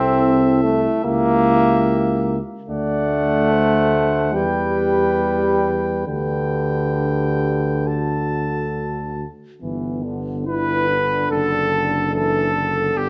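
Classical brass quintet music in G major, triumphant and warm, moving at a rubato 66-74 BPM in 4/4, where a clear, distant trumpet carries the melody over a mellow, close-miked flugelhorn second line with light vibrato, a present trombone and dark, punchy French horn in accompaniment, and a smooth-topped tuba bass, all bathed in a recital hall reverb, in a passage cut from a longer piece that shifts to a new section at 9.6 seconds.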